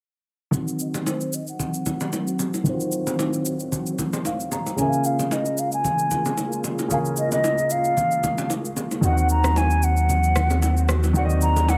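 A hollow, close-miked concert flute carries the melody up front in this hypnotic, deep amapiano excerpt at 113 BPM in 4/4, its pure, tongued tone touched with vibrato and trailed by a digital delay. Beneath it, a smooth, vintage grand piano plays the accompaniment and adds a short fill at 4.0 seconds. A string machine voicing violas sits in the background with soft-attack sawtooth chords, thickened by ensemble chorus. The groove swings on the sixteenths, with a produced electronic shaker and rim click alongside bright, hard-handed congas and bongos. A filter sweep runs across the whole passage as the harmony moves from Ebm69 to Db6 and on to Ebm6 in Eb dorian, all set in a light studio reverb. At 9.0 seconds a punchy sine sub bass arrives up front with a pitch-drop attack, holding a sustained Eb2.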